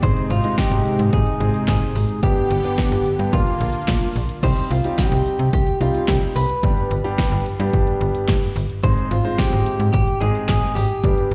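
A punchy, overdriven analog drum machine drives this synth-pop excerpt at 109 BPM in a straight 4/4, with kick, snare, handclaps, hi-hat and crash, while a snappy, metallic FM bass sits up front in C harmonic minor. A slightly broken-up, compressed electric guitar carries a driving, melancholic melody over a clear, intimate grand piano with audible action noise, and a brassy, detuned sawtooth pad with chorus holds chords until 4.4 s. The sound has a large studio reverb and a dull top end, as if played through a big system in a bare room, with chords moving from Ab through G and Bb to Cm, then on to G and Ab.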